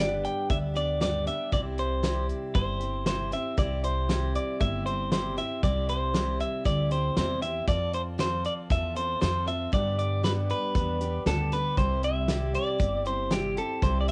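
Honky-tonk and classic country in C major, this sunny, nostalgic clip moves at 117 BPM in a straight 4/4 and is cut from a longer piece. A clean, twangy electric guitar carries the melody up front, its bright, compressed picked tone colored by cassette tape and plate reverb. Beneath it, a full-bodied dreadnought steel-string acoustic guitar is picked in accompaniment, with audible finger squeak and the same tape and plate treatment. A woody, thumpy upright bass with gut strings plays pizzicato in a dark low register, while a natural country drum kit enters at 0.2 seconds with a punchy kick, fat snare and hi-hat, sounding like a small room through tape. The chords move from G to C, then to F at 7.7 seconds before returning through G to C, all captured as a home cassette recording in a modest booth ambience.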